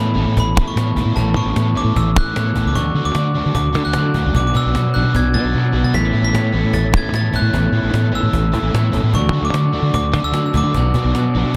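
A straight 4/4 pulse at 150 BPM drives this wistful, jangly indie rock excerpt in A major, with a woody cajon entering at 0.4 seconds, played with soft hands and faint snares in a small room. The fuzz fingered electric bass sits up front, bright and growly with overdrive, beneath two guitar riffs: one twangy and slightly broken-up through a small old amp with spring reverb, the other thick, dark and distorted with ensemble chorus. A glockenspiel struck with brass mallets carries the melody high above, its bell-like ringing tone caught in a boxy little room. The harmony cycles from Aadd9 through D to Bm and back again. The kick and snare drop out briefly between 5.5 and 5.9 seconds, and at 5.9 a very quiet, flute-like tonewheel organ joins with soft, percussive sustained chords, chorus vibrato and a slow rotary speaker, all in a dry mix.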